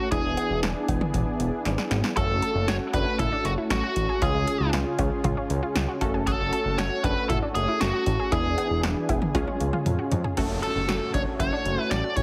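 Driving and nocturnal, this synth-pop excerpt sets an overdriven, biting electric lead guitar with slapback echo up front over an analog drum machine with a deep kick, punchy snare and metallic hats, a fat, saturated analog bass, a funky polysynth comp and a lush, warbling unison pad, with a round analog pluck adding arpeggios from 2.2 s, drum fills breaking up the groove, and a very quiet downlifter entering at 10.4 s, all within a heavily compressed, radio-like sound.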